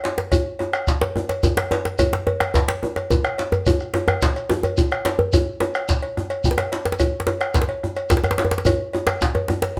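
Two up-front djembes drive this festive West African drum ensemble: one medium-tuned with metal rattles, hard hands and a vintage, band-limited tone, the other tight and cracking, close and dry. Around them sit a metallic cowbell, a deep, dark bombo with a small-room sound, and a grainy, mellow shekere, all entering within the first 0.3 seconds of a brief, driving section in 12/8 at 144 BPM with a straight feel. Moderate studio reverb frames the passage, which is cut from a longer piece.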